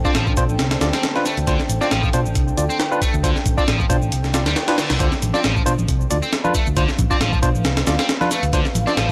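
A deep, moody pad of detuned sawtooth chords opens this funky, energetic breakbeat excerpt, pumping to the sidechain with chorus, reverb and vintage sampler grit, as a compressed, sampler-style drum kit with a thumpy kick and high-tuned snare sits up front beside a dark, round picked bass. Over the swung groove, an overdriven, double-tracked electric guitar plays a bright riff through analog delay, while a barky tine electric piano adds clean, filtered stabs with delay of its own. A tape-flavoured electronic shaker ticks in the background, a faint reverse cymbal appears at 4.7 seconds, and low-tuned, thick-skinned congas join at 5.2 seconds, all within a dry, gritty hardware sound lifted by light digital ambience.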